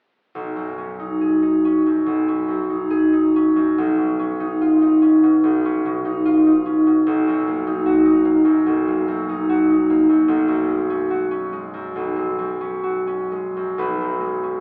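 Serene and peaceful, this short passage, cut from a longer classical piece for solo harp, unfolds in B lydian with a rubato feel in 4/4, its tempo drifting between 59 and 78 BPM. The concert harp carries everything alone from 0.3 to 14.6 seconds, its fingerpicked strings ringing with an acoustic, warm tone and sitting up front, spanning from B1 to B4. The harmony glides from B69 through C#9/B, Bmaj7 and G#m11/B before settling on Bsus2 at 13.8 seconds, giving the music an open, floating quality. A wet recital hall reverb surrounds the instrument, lending the sense of a church or concert hall. Curiously, the overall sound has the narrow, filtered character of AM radio, casting a faint vintage haze over the gentle resonance.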